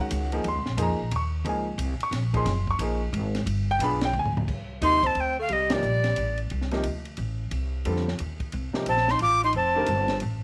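This cool, spiritual modal jazz excerpt opens with a clear, slightly worn concert grand piano accompanying in a deep-bassed, short-sustained voice. A woody pizzicato upright bass on steel strings and a compact cocktail drum kit join almost at once; the kit is dark and smooth, with a rolled-off top, tight kick and high-tuned snare. The tempo is a brisk 178 BPM in 3/4 with swung eighths, and the harmony moves from Gbadd9 to G7b9 before a drum fill at 4.1 s carries the band into C dorian over Cm69 and later F. At 4.8 s a breathy, bright metal flute takes the melody with vibrato and a tongued chiff, while a warm tenor saxophone plays a second line beneath it, punchy and forceful with a smooth top and light vibrato. Both horns play in two short bursts, and a band accent punctuates the first of them. Light reverb and small room ambience surround the group, with the piano, bass and flute placed up front.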